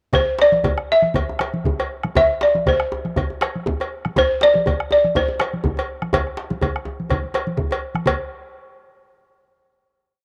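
West African traditional music for a drum ensemble, this short, complete piece has a driving, earthy mood at 121 BPM in 4/4, with a slight swing on the sixteenths and uneven beats, and it gathers speed from start to finish. Up front, a woody, buzzing balafon struck with hard rubber mallets carries a motif-based melody of call phrases in C major pentatonic, sitting between C5 and E5 with a dry, boxy small-room character and a cassette-tape coloring. A metallic cowbell also sits forward, playing a bell pattern, while tight, cracking djembe, thick-skinned, damped congas played with soft hands, and a round, dry bombo deep in the background each keep evenly spread patterns. The balafon drops out at 7.6 seconds, leaving the percussion to run on until 8.3 seconds as the piece closes on a final hit from 8.1 seconds. Light reverb and the home cassette recording give the whole ensemble an intimate, homespun sound.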